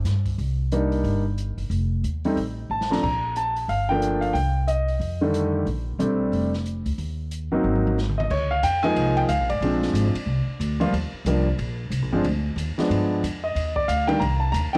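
Swinging and playful, this brisk 182 BPM jazz piano trio excerpt in Bb major pairs an up-front, woody pizzicato upright bass with an open drum kit of dark cymbals and a boomy kick that drops in fills at 2.7 and 7.6 seconds, while a tape-tinged baby grand carries the melody from 0.7 seconds through chords like Cm9, F13 and G7b9, all bathed in springy reverb on a homemade cassette recording.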